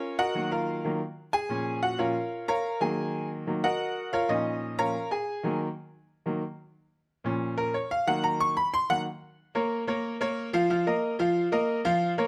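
A bright, worn-sounding grand piano plays alone throughout this passionate, driving Latin fragment, its short-sustained notes sitting up front and spanning Bb2 to Db6. The harmony swings back and forth between Ebm and Bbm before a new section arrives at 9.4 seconds and settles on an Ebsus2. Close, detailed miking and a light reverb keep the sound open and immediate.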